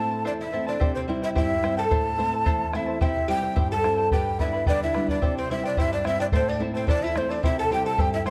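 Dark, warm production in a moderate recital-hall reverb frames this melancholic yet festive Andean folk excerpt in 2/4. An up-front, slightly unsteady large quena carries the breathy, vibrato-laden wooden melody with tongued chiff over fingerpicked charango shimmering on double strings and a classical nylon-string guitar, while a bright, fretless oud enters at 0.3 s with a woody plectrum-plucked second line and a round, close bombo joins at 0.8 s.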